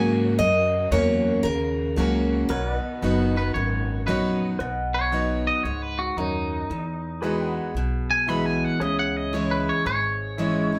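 Country at 114 BPM with a swung, easygoing and nostalgic feel in B major: a picked, full-bodied acoustic guitar carries the melody up front until 4.0 s over a second acoustic guitar's picked accompaniment, a brilliant grand piano in the background, pedal steel sustained chords played with fingerpicks, a very quiet, distant bowed string section that drops out at 4.6 s, and a thumpy, woody upright bass, while a twangy, compressed electric guitar enters at 3.4 s and takes a clean solo from 4.6 s, all in a live room with wet studio reverb as this cut from a longer piece moves from F# and B to Eadd9 and C#m.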